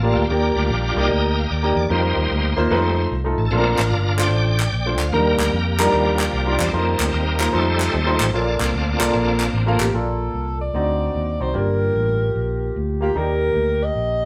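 The tonewheel organ leads this uptempo gospel excerpt, taking a solo from the start to 9.9 seconds with a bright, shouting tone, audible key click, chorus vibrato and a slow rotary speaker, sitting up front. Beneath it, a concert grand piano with deep bass and audible action noise provides intimate accompaniment, while a round, amped fingered electric bass anchors the low end at 149 BPM in a swung 4/4 in Bb major. Crisp, close group handclaps join at 3.8 seconds, adding a human pulse through the organ's stretch, as the harmony circles through Ebmaj7, F7sus4, F7 and Bbmaj7. At 9.8 seconds a mellow alto saxophone with vibrato takes the melody, and from 9.9 seconds a distant French horn section holds sustained chords in the background over a move through D7b9 and Gm7. The band plays live in one room, wrapped in a wet studio reverb.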